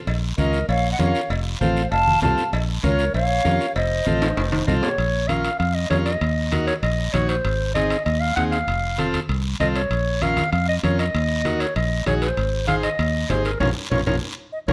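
A round, up-front fingered electric bass opens with ringing, band-limited cowbell and timbales and a raspy, dry guiro in this passionate, driving cumbia at 195 BPM in Bb minor, joined at 0.4 s by a hollow, pure-toned concert flute with vibrato and plate reverb, a gritty clarinet, a buzzy overdriven vintage combo organ and bright, low-tuned congas in the background, before the flute drops out and the growling jazz-style clarinet takes a solo from 5.0 s to the end of this excerpt, where a drum fill and a band accent close it out.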